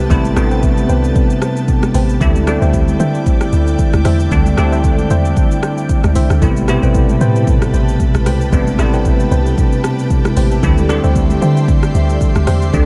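A swung 16th-note amapiano groove at 114 BPM in A minor sets a late-night, deep mood, with an electronic drum kit of deep kick, metallic hats, rim click and shaker carrying vintage 12-bit grit up front, very quiet acoustic congas with thick skins, and a dark, round log drum bass with a percussive, fast-attack, decaying bite. A bright, bell-like tine electric piano sits clean and direct at the front with ensemble chorus, moving between Am9 and D9sus4, while an ethereal, airy detuned pad with slow attack and long release pumps under sidechain and its own reverb. From 0.5 seconds a soft, gentle filtered pluck with chorus and tape echo adds dark stabs in the background of this short cut, all within a light reverb.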